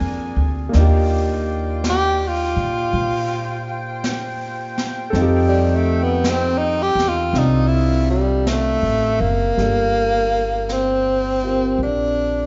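A slow, intimate and wistful swung jazz ballad at 54 BPM, cut from a longer piece, in which a breathy, up-front tenor saxophone with vibrato, subtone and scooped notes enters at 1.9 seconds over a vintage concert grand piano with deep bass and audible action noise, a woody, thumpy pizzicato upright bass, a brushed drum kit that joins at 0.7 seconds, and a distant, mellow saxophone section holding soft sustained chords until 9.6 seconds, the harmony moving from Bb7 through Ebmaj9 and F9 to Gm9 inside a concert-hall reverb with a dulled top end.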